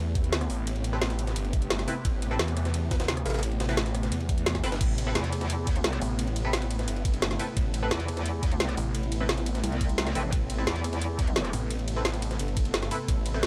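Futuristic and aggressive, this dark technical drum and bass cut runs at 174 BPM in A minor, resting on an Amadd9 chord throughout its 13.5 seconds, which are taken from a longer piece. A swarming, warbling drone holds tense sustained chords from the start, its granular, detuned tone bathed in built-in reverb and pumping against the sidechain, while a snarling distorted saw bass growls underneath, up front and compressed, with a moving notch shaping its detuned sawtooth layers. The drums arrive at 0.2 seconds: a knocking, layered electronic kick, an up-front kit with a woody snare, metallic hats, crash, ride and rim clicks that sounds re-recorded in a small room, and a very quiet jungle sampler-style kit whose pitched-up, high-tuned snare and ride add gritty, overdriven texture. From 0.9 seconds, a band-passed chord stab sits in the background, nasal yet full-bodied, coloured by phaser, lush chorus and dub echo. 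At 5.2 seconds a metallic wobble bass joins, its bright, saturated FM tone thickened with chorus and pushed to the front. The whole mix carries a light reverb.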